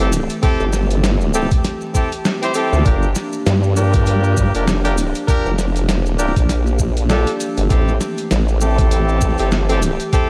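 Vinyl crackle and a light reverb wrap this short cut from a longer glitch hop piece, which struts along at 99 BPM in 4/4 with a swung sixteenth-note feel and a swaggering, playful mood in A phrygian, tuned slightly flat. Up front sits a formant-sweep wobble bass, its detuned sawtooth-and-sine tone wobbling through a formant filter with chorus and overdrive, while a sampler-style boom bap kit supplies gritty, pitched-down hi-hat and a medium-tuned snare in a small room, joined at 0.4 s by a thumpy, compressed electronic kick. A clear horn section with light vibrato and a smooth top punches out pop-style stabs, roughened by 12-bit sampler grit and tape echo and pumped by sidechain compression. Behind them, a warbly, nostalgic lo-fi pad of detuned, wave-folded square, triangle and sine tones holds mellow sustained chords with chorus and its own reverb, also pumping. Grainy maracas add close, dry texture in the background as the harmony moves from Am7 to Gm7 at 2.9 s and returns to Am7 at 7.7 s.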